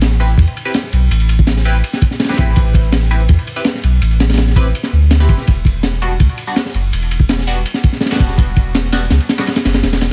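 Dusted with vinyl crackle in a small, dull-topped room, this dark, frenetic drum and bass and jungle excerpt sets a gritty, crunchy breakbeat kit with a punchy kick, high-tuned snare and dark ride up front beside a thick, saturated sub bass, while a nasal, band-passed chord stab, coloured by phaser, cassette tape and dub echo, moves from Am7 to Em7 at 5.5 seconds.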